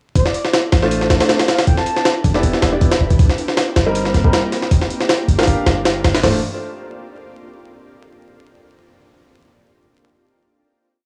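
Drum and bass in a dark, nostalgic jungle style at 158 BPM, driven by an up-front, overdriven sampler-style kit whose heavily chopped breakbeat pairs a thumpy kick with a high-tuned snare, under a deep, boomy 808-style bass with tube saturation playing a dub-style line. Sparse, echoing baby grand piano stabs enter at 0.8 seconds, moving one chord shape in parallel through Dm7, Em7, Cm7 and Gm7, while a breathy, flute-like synth lead with tremolo, vibrato and dub echo sits in the background with short answering phrases until 2.1 seconds. The gritty hardware recording carries vinyl crackle and small-room ambience, and the piece closes on a final Dm7 chord from 6.2 seconds.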